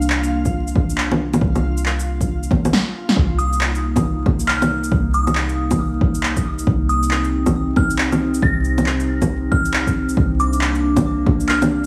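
A lo-fi, crackling sound with light room ambience frames this melancholic, ghostly future garage excerpt at 137 BPM in C minor, swung on the sixteenths. A warbling, detuned pad with 12-bit grit and sidechain pumping holds the chords over a soft, round 808-style bass, while up-front electronic shaker, handclaps, bongos and a punchy snare drive the groove alongside a layered kick that enters at 0.5 seconds. A reversed, dreamy swelling texture opens the piece until 2.7 seconds, and after a drum fill a crystalline FM bell melody with chorus and tape echo arrives at 3.4 seconds.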